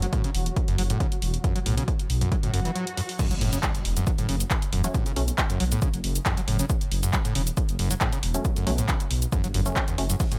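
Driving and intense, this excerpt of peak-time techno at 137 BPM in F# minor layers a squelchy, screaming distorted acid line with dub echo over a dark, rumbling detuned saw bass, a punchy up-front kick and a tape-warm analog drum machine of claps, hats, shaker, ride and crash, while a swarming, nasal drone hangs in the background until a swell, break and background impact at 3.2 seconds launch the drop on F#m, where crisp, gritty wavetable chord stabs flicker in with sidechain pumping.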